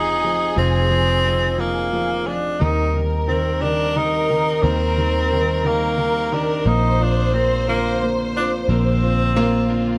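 Aching and melancholic, this slow six-eight pop ballad at 59 BPM moves through Fm7, Eb6 and Bbadd9 as a roomy, jazz-style tenor saxophone carries the melody up front with vibrato and scooped notes. A lush, bowed violin section adds a smooth second line, while a concert grand piano with deep bass and short sustain supplies the accompaniment. A very quiet, twangy, direct-recorded clean electric guitar picks arpeggios alongside a round, punchy, foam-muted fingered bass, all set in light studio reverb.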